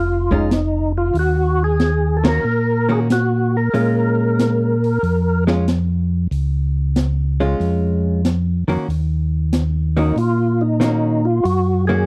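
Smoky and late-night, this soul jazz organ trio excerpt swings over minor-seventh chords. A mellow, round tonewheel organ holds the bass line throughout, while a fat, lightly overdriven percussive organ with key click, chorus vibrato and a slow rotary speaker carries the melody, pausing at 5.4 seconds and returning at 10.0. A clean, picked hollow-body electric guitar comps in a dark, compressed tone, and an open acoustic drum kit with a high-tuned snare, punchy kick, hi-hat and ride cymbal enters at 0.3 seconds. The band hits an accent together at 2.1 seconds, all captured in a dry, close 1970s-style studio sound with small room reverb.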